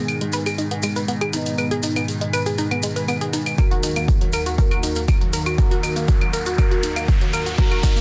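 A dramatic, cinematic stretch of melodic techno in G# minor at 120 BPM, this 8-second build-up moves from G#m to D#m at 3.6 seconds under a filter sweep. A lush, thick unison pad holds sustained chords with a warbling, vintage body, while a round, wave-folded analog pluck spins arpeggios with 12-bit sampler grit and tape echo. A brassy, fat analog synth brass carries the melody with vibrato and chorus, and an overtone-sweeping drone sits resonant and low in the background. Electronic hi-hat and claves run from the start alongside grainy, distant maracas, and a deep, up-front electronic kick arrives at 3.6 seconds with a drum fill. An electronic riser climbs in at 5.2 seconds, and the whole mix is dry, dense and heavily limited, with sidechain pumping on the synths.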